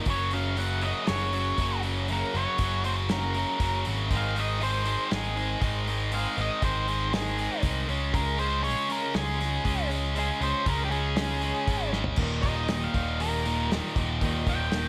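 A straight 4/4 pulse at 119 BPM, felt in half time through the opening section, drives this anthemic, cathartic quiet-loud alternative rock fragment, where a loose indie drum kit with a punchy kick and dark cymbals and an up-front, growly picked electric bass anchor a bright high-gain guitar riff, a twangy clean electric guitar plays arpeggios in the background with subtle chorus, and a dark octave-fuzz lead guitar carries the melody through slapback echo and plate reverb over Gb, Ab and Db chords, until a drum fill at 11.9 s launches a lead guitar solo at 12.2 s, joined by a thick fuzz guitar riff in the background on Eb5.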